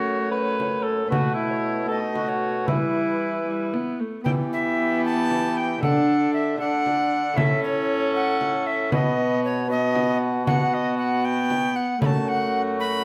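A wet stone room with a 1.2 s reverb surrounds this solemn, rustic renaissance-style consort dance, cut from a longer piece and moving at 77 BPM in dotted quarters, in 6/8 with a straight feel in E dorian. Up front, a bright tenor recorder carries the melody with an airy, woody tone, crisp chiff on its attacks and vibrato, while a mellow cor anglais sits distant on the second line with light vibrato. A single bowed viola with a reedy gut-string tone and smooth top fills the middle, and a delicate fingerpicked lute with doubled gut strings, some at the octave, plays in the background. Underneath, a roomy bassoon gives a warm bass line with soft attacks, and a small acoustic frame drum heard in a live room enters at 0.6 s and stops at 12.3 s. The harmony moves from F#m through B7sus4 and B7 to Em, then D, A and B before returning to F#m.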